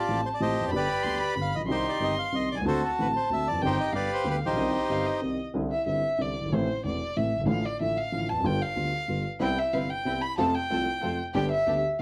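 Set in a rubato 3/4 at 186 BPM, this sultry, tense tango fragment, cut from a longer piece, opens in C harmonic minor before turning to C major at 5.5 seconds. A reedy bandoneon carries the melody up front, while a single bowed violin with smooth vibrato plays a second line alongside it. Beneath them, a mellow concert grand piano supplies the accompaniment with a deep bass register, reaching low into the keyboard. The bandoneon stops at 5.2 seconds, and from 5.5 seconds the violin steps forward as soloist over chords such as Cadd9, Am and G7. At 9.4 seconds a lush symphonic string section adds bowed stabs from the background. A moderate studio ambience surrounds the ensemble.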